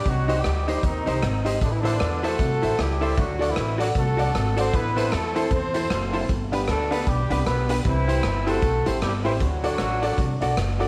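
A ska groove at 154 BPM in 4/4, with a 60% swing on the eighth notes, drives this joyful, upbeat passage cut from a longer piece. The raw garage drum kit of hi-hat, kick drum and rim click sounds gritty and saturated, with a punchy kick, a pumping stone-room character and a rolled-off top. Underneath, the upright bass plays woody, thumpy pizzicato up front. A warm, pop-style horn section with octave doubling carries the melody up front from 0.0 s until 10.5 s. Behind it, a dark, clean hollow-body jazz guitar adds compressed, picked accompaniment with slapback echo, and a brilliant, worn, slightly detuned upright piano enters with stabs at 0.3 s. The harmony moves through Cm, Am, D, Am, G, C and D, set in a small room with a moderate plate reverb.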